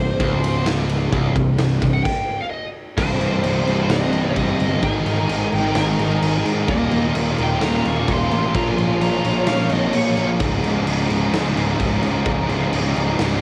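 A lo-fi home recording on cassette carries this dark, epic heavy metal excerpt in C phrygian at 129 BPM, where a dark high-gain lead guitar solos from the start over a bright high-gain riff guitar, a very quiet sludgy distorted guitar also playing a riff, growly fuzz bass, a big rock drum kit with a punchy kick in a stone room, and a distant, lush bowed string section holding sustained chords. After a stop at 2.1 seconds, the band drops into half time at 3.0 seconds, where a bluesy overdriven second lead enters in the background as the strings move from Cm through Ab5, Eb and Bbm. Both lead guitars fall away at 10.3 seconds, leaving the riff, strings, bass and drums to close on Db5.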